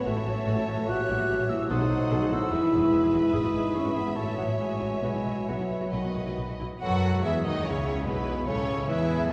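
Graceful and lively, this dramatic romantic orchestral passage moves briskly in a flexible, rubato feel, cut from a longer piece. A violin section carries the melody with a soft-attacked, expressive vibrato and a smooth top. A second violin section, a crisp, pure flute, a mellow cor anglais and a distant, very quiet clarinet weave supporting lines around it. A tight French horn section holds mellow sustained chords, while a very quiet viola section and a vintage-toned bassoon fill in the accompaniment. A woody cello section and a distant, even double bass section anchor the bass beneath a ringing, fingerpicked harp playing arpeggios. Hard-mallet timpani strike briefly from 1.7 to 2.3 seconds, and a long cathedral reverb bathes the ensemble in the resonance of a church or concert hall as the music settles into a new section at 6.8 seconds.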